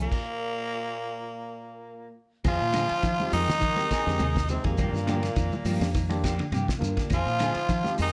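Afrobeat at 103 BPM in F dorian, this driving, funky passage is cut from a longer piece and opens with a stop from 0.1 to 2.5 seconds before the band settles into a groove over Fm7 and Gm7. A raspy, edgy tenor saxophone carries the melody up front with vibrato and plate reverb, while a brilliant trombone and a distant, growling bass trombone play a second line further back. A deep, round fingered electric bass anchors the low end, and a cloth-damped, thuddy drum kit with dark cymbals, a fat snare and a tight kick sounds gritty and rolled-off on top. In the background, a slightly broken-up electric guitar plays dark arpeggios and a clean electric guitar adds picked stabs through lush chorus. Congas, woody claves and a grainy shekere join at about 2.5 seconds, and a tine electric piano, heard through its built-in speakers, adds accompaniment from 3.2 seconds, all within a moderate club reverb.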